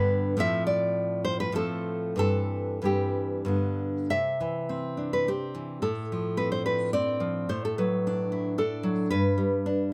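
A bright, fingerpicked nylon-string guitar sits up front in this tender, nostalgic romantic piece for solo classical guitar, played in 3/4 with a rubato feel. The short excerpt moves through two passages, with the second beginning at 4.1 s on a C chord and passing through F/A and D/A before settling on G at 9.1 s. A moderate studio reverb gives the acoustic tone a gentle sense of space.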